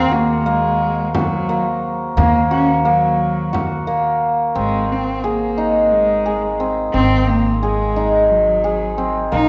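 A worn, warbling cassette sound with pitch drift and a dulled top end sits in a moderate recital-hall reverb, framing this pensive, urgent fragment of contemporary chamber music in 7/8. Up front, a hammered dulcimer rings out shimmering arpeggios while a single bowed cello carries a nasal, boxy melody with vibrato, and a woody pizzicato upright bass anchors the low end. A frame drum struck with hard hands appears briefly from 1.1 to 3.9 seconds, before the harmony shifts at 4.6 seconds into a new section.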